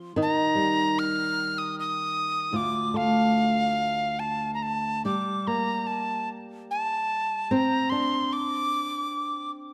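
This Celtic slow air is a brief, mournful and haunting passage in 3/4, moving at a rubato pace of roughly 70-77 BPM in G minor. A breathy metal tin whistle carries the melody high in its register, its crisp attack and chiff giving each note a sharp edge while vibrato colors the sustained tones. Beneath it, a fingerpicked flamenco guitar supplies acoustic accompaniment, with finger squeak audible on the strings as it spans a deep low end up into the middle range. Both instruments sit up front, and the harmony moves through Eb, Dm, Gm and Csus2 in this excerpt taken from a longer piece. A moderate concert hall reverb with a 2.2-second tail surrounds the pair, lending the short phrase a spacious, lingering air.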